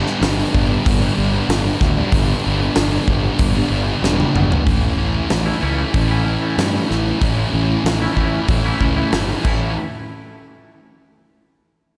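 A thick, double-tracked fuzz guitar riff sits up front in this anthemic, bittersweet quiet-loud alternative rock excerpt at 94 BPM in A mixolydian, driven by a huge arena drum kit with a punchy kick, fat snare and bright cymbals, a round overdriven fingered bass, and, from 4.8 seconds, a clean, compressed twangy guitar playing arpeggios through lush chorus and slapback echo, all set in a big hall reverb that gives it a massive arena sound.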